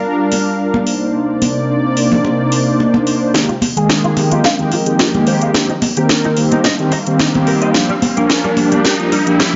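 A mellow, brassy synth and a lush, thick unison pad open this groovy, cosmic nu-disco excerpt at 109 BPM in 4/4, with a light 16th-note swing and chords moving from Gm7 to Cm9. The sawtooth brass sits up front with chorus, vibrato, slapback echo and a filter sweep, while the slow-blooming pad carries sustained chords with 12-bit sampler grit, and both pump against the beat. Almost immediately a house drum kit with a cracking snare and metallic hats arrives up front with overdrive, joined by bright, high-tuned congas played with hard hands. At 3.3 seconds a build-up begins over Fm11 and Eb6: a very quiet, punchy electronic kick enters under a drum fill, and a clean, picked, direct-recorded electric guitar riff follows, scooped and low-passed with ensemble chorus, sampler grit, slapback echo and its own filter sweep. An electronic riser creeps in from the background at 5.7 seconds, heading back toward Gm7. 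The dark production rolls off everything above 7.7 kHz and sits in a wet echo-chamber reverb with a digital ambience.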